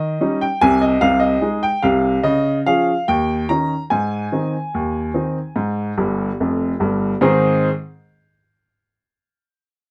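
A clear, woody upright piano plays solo from the first moment in a jaunty, cheerful ragtime passage cut from a longer piece, moving at 73 BPM in a straight 2/4 in Ab major with polished, present tone and long sustain sitting up front in a small room, and it slips in a brief fill at 6.0 seconds before falling silent at 7.7 seconds.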